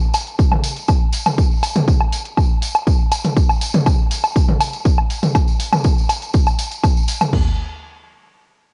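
Melancholic and cinematic, this short cut from a longer techno piece moves at 121 BPM in a straight 4/4. Two electronic, layered drum kits sit up front, both with a tape-warm character from being re-recorded in a small room. One carries hi-hat, toms and woodblock with warm hats. The other, slightly louder one, enters at 0.4 seconds with crash cymbal, toms and a heavy kick. A jingly, bright acoustic tambourine plays from the start in a live room, mixed lower beneath the kits. Light reverb and a cassette home recording give the sound a dulled top end, and a brief new section begins at 7.3 seconds.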